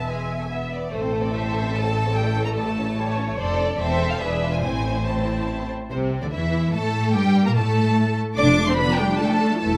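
In a straight 3/4 at 145 BPM, this dramatic, restless excerpt from a quick classical-period movement for string orchestra in A minor sets a smooth, lightly vibrato violin section on the melody above a lush second violin line, distant violas with expressive portamento, even cellos and an up-front double bass section, heard through close, detailed microphones in a moderate recital hall reverb.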